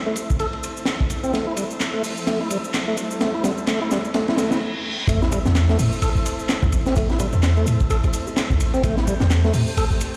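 A swaggering, gritty breakbeat cut from a longer piece, swinging in a loose 4/4 over a single minor chord. A smooth tonewheel organ holds sustained chords through a slow rotary speaker, roughened by vintage 12-bit sampler grit and pumping under a sidechain. Over it, a fat, lightly overdriven second organ plays the riff with audible key click, a fast rotary speaker, tube saturation, tape echo and a low-pass filter. A crunchy breakbeat kit sits up front with a dark, rolled-off top, a high-tuned snare and a tight kick, joined by layered, tape-toned electronic shaker and handclaps. The opening build-up features a filter sweep on the organ, a drum fill, and a background riser, reverse cymbal and sub drop, followed by a brief stop at 4.6 seconds. At 5.1 seconds the drop lands with an impact as a deep, boomy 808-style bass with a noise layer pushes forward, and bright, dry bongos and congas tap very quietly. 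Throughout, the mix plays on a big sound system in a bare stone room.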